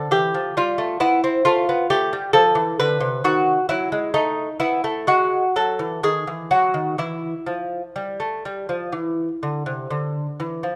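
Classical baroque-style dance for solo lute, solemn and grave, moving in a slow, rubato 4/4 across this brief excerpt cut from a longer piece. The fingerpicked lute sits up front with a warm, delicate, gut-strung tone, its doubled courses and some octave-doubled strings adding richness as the harmony passes from A minor through a diminished chord and a bare moment between chords to a Cadd9 near 8.9 seconds. Light reverb surrounds the instrument, and a faint mains hum lingers beneath the playing.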